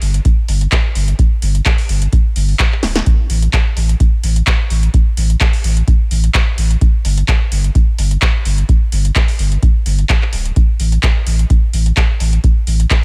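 A lightly swung 4/4 groove drives this trippy, raw acid house excerpt, where an analog drum machine's punchy snare, handclaps and metallic hi-hats sit in a short room, a deep electronic kick joins up front at 0.3 seconds, a drum fill arrives at 2.8 seconds, and a round sine sub bass pumps through sidechain compression in an otherwise dry mix.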